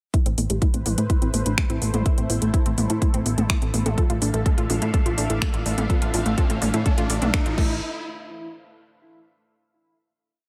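A punchy electronic kick drives a four-on-the-floor pulse at 125 BPM in straight 4/4, while a house drum kit adds programmed hats and a backbeat, with metallic closed and half-open hats, finger snaps, low toms and a crash cymbal carrying a tape-warm character. This short, complete melodic techno piece in A minor feels hypnotic and melancholic, built as one long build-up over an Amadd9 chord that moves to Dm/A and back. A plucky analog bass, mixing sawtooth and square waves, rolls in funky sixteenth notes up front, and a detuned unison pluck cycles a 12-step arpeggio that drifts against the bar, both pumping with the sidechain. In the background, a round, octave-layered synth lead with chorus, vibrato and digital delay repeats a sixteenth-note riff over a pedal note, and filter sweeps shape both the lead and the arpeggio through the build. A lush, thick pad with slow attack, chorus and phaser holds bright sustained chords, a riser enters at 3.7 seconds, and the build gives way to a final hit at 7.8 seconds, all set in light reverb.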